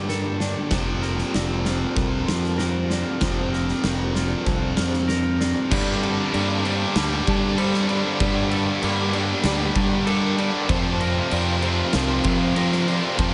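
Cinematic and cathartic, this post-rock excerpt in G minor moves at 96 BPM in a straight 4/4 over Gmadd9 and Fsus4 chords, with an up-front tight distorted guitar riff and a growling, punchy overdriven fingered bass alongside an oversized low-tuned drum kit of boomy kick, medium-tuned snare and dark crash cymbal, while a twangy clean guitar and a felt-muted upright piano with audible action noise play arpeggios through chorus and delay in the background, a distant, very quiet string section sustains lush bowed chords with vibrato and portamento, a second overdriven guitar joins the riff at 5.7 seconds, and a huge ambient reverb soaks the dreamy mix.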